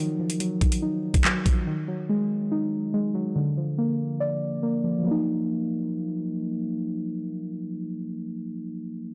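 This cold, tense drill cut has a half-time feel, built on muted, felt-like synth keys with a dark, chorused tone that carry a minor progression from start to finish. An electronic drill kit of knocking kick, metallic hi-hats and handclaps hits up front only briefly, from 0.3 to 1.6 seconds, leaving the keys alone for the rest of the short excerpt. The whole recording sounds blown-out and overdriven, set in light reverb.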